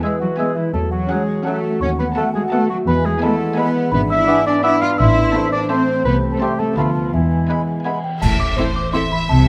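This playful, whimsical film cue moves at a brisk 169 BPM in 3/4, with a magical, mischievous mood that begins in E major and turns to A minor at 3.9 seconds. A bell-like celesta with soft felt hammers carries the melody alongside a lush, close violin section, while a second, very quiet violin section joins an airy, hollow little flute group, a soft-edged oboe and a warm solo clarinet on the second line. Beneath them, a clear bassoon and a background viola section fill in the accompaniment, a mellow French horn section holds sustained chords, and a concert harp rings out fingerpicked arpeggios. The cellos and a focused double bass section, which enters just after the start, anchor the bass with rich bowed tone. Dark, close cymbal swells, clash cymbals and concert bass drum arrive at 6.1 seconds, and the ensemble lands an accent at 8.2 seconds as the music returns to A minor. A moderate scoring-stage reverb gives the orchestra a sense of space in this piece cut from a longer cue.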